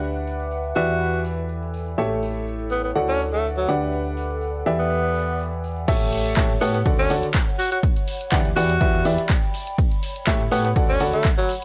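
A clear, lightly vibrato tenor saxophone carries the melody through analog delay over a worn, up-front grand piano riff, a round FM bass and a warbling, nostalgic lo-fi pad that pump with the sidechain in this joyful 123 BPM piano house excerpt in A mixolydian, where a small-room tambourine gives way at 5.9 seconds to a drop with a punchy, tape-warm electronic kick and an analog drum machine's filtered hi-hat, handclaps, shaker, ride and crash, all captured in a dry, gritty hardware recording.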